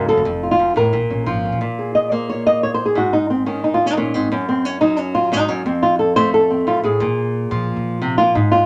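A thumb-plucked flamenco guitar sits up front with audible finger squeak, taking a dramatic, intense solo from 1.6 seconds, while a woody pizzicato upright bass supports it at the opening and returns at 7.0 seconds, all in a straight four-beat flamenco feel within a small, moderately reverberant room, in this brief cut from a longer piece.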